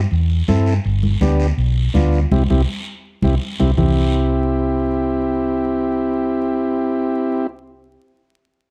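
A round, hollow-bodied electric bass sits up front through this festive, sunny cumbia excerpt at 164 BPM in C major, holding the low end beneath a reedy vintage combo organ with light vibrato that enters at 0.5 seconds. Bright, softly played congas in the background and a raspy, distant guiro drive the groove until about 3.9 seconds, with a band accent between 2.3 and 3.8 seconds. Light reverb and vinyl crackle give the whole track a dark, warm production.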